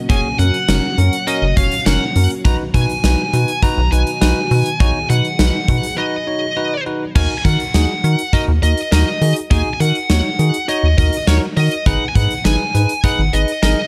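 A studio reverb frames this cool, nocturnal synth-pop excerpt in Eb minor, moving at 102 BPM in a straight 4/4. A gated 80s drum kit sits up front with a punchy kick, a medium-tuned snare and bright cymbals, while a rubbery, hollow square bass bounces underneath with a dark, resonant filter pluck. A bell-like tine electric piano supplies clean, direct accompaniment, and a mellow, vintage organ-string ensemble holds sustained chords in the background, shimmering with phaser and ensemble chorus until it drops out at 7.1 seconds. Over the top, a high-gain lead guitar carries the melody in a high register, its distorted, picked tone trailed by delay. The harmony moves from Gb to B, then after a break at 6.0 seconds the passage repeats over Ebm and Abm7.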